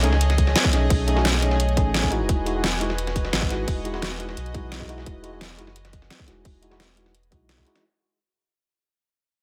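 A worn, slightly out-of-tune tine electric piano with light overdrive and tape echo opens this uplifting, lush liquid drum and bass excerpt at 173 BPM in E major, alongside floating, bowed sul tasto strings that pump against the beat and a round, deep sine sub bass held up front. A tight, overdriven electronic kick enters at 0.4 s, layered with a deep-snared pop kit in a small room and a gritty, tape-warm sampler-style kit with hi-hat and snare sitting far back in a large room. Over light reverb, the harmony moves from B13 to Emaj9 at 2.1 s while the passage fades out.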